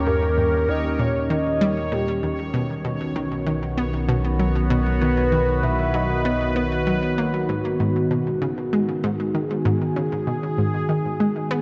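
Ambient, sequencer-driven space music at 97 BPM in G# minor, this expansive, hypnotic passage, cut from a longer piece, moves from D#7 to B and settles on G#m7 at 7.5 seconds, all set in a vast, echoing cathedral-like reverb. A bright, up-front sweeping resonant pad holds slow-attack chords throughout, while a round, detuned analog pluck with a fast attack and delay drives the riff through to 11.6 seconds. A warbling, vintage analog drone with pulse-width modulation anchors the bass, a bubbling texture of random filter steps glistens high above, and a soft, dark, octave-layered lead with vibrato, phaser and delay sings the melody. The lead drops away at 6.9 seconds and the drone and texture at 7.5 seconds, while a filter sweep runs across the whole opening section.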